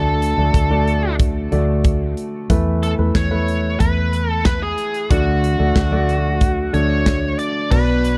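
A dry, close small-room sound with a 1970s studio character frames this warm, hopeful piano-driven pop excerpt at 92 BPM in 4/4, moving from D to Esus4 and back to D. A polished, up-front grand piano carries the accompaniment while a bright, overdriven, picked electric guitar plays the melody, over a dark, round, foam-muted electric bass and a punchy, airy acoustic drum kit with kick, medium-tuned snare, hi-hat, crash and handclaps that enters at 0.2 s. At 7.7 s a lush, very quiet bowed string section slips in with smooth sustained chords and warm vibrato.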